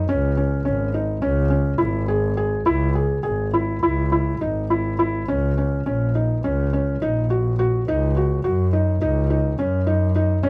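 The sound is dark and close, with light reverb around two players set up front. This is a pensive yet urgent piece of contemporary chamber music in an uneven nine-eight meter, cut from a longer work. A felt-muted upright piano plays arpeggios in a narrow middle register, its tone soft and intimate, with short sustain and the audible noise of its action. Beneath it, a single bowed double bass carries the bass line, focused and slightly boxy, with a touch of vibrato. The harmony moves from C# minor to D#m7 at 5.3 seconds and settles on a C#sus24 chord at 7.9 seconds.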